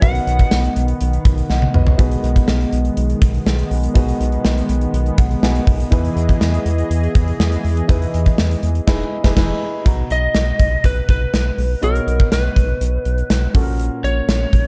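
A dark, lightly reverberant production frames this glossy, uplifting 1980s-style pop excerpt in straight 4/4, anchored by a gated acoustic drum kit with bright cymbals, a tight kick and tambourine sitting up front over a round, deep analog bass. A smooth, vintage grand piano accompanies throughout and takes a short fill at 4.9 seconds, while a bold, detuned analog pad with chorus and tremolo holds sustained chords until 9.8 seconds, joined briefly by very quiet synth brass stabs during a band accent. A slightly broken-up, compressed electric lead guitar states the melody at the opening and returns at 10.1 seconds over a Bmaj7 chord.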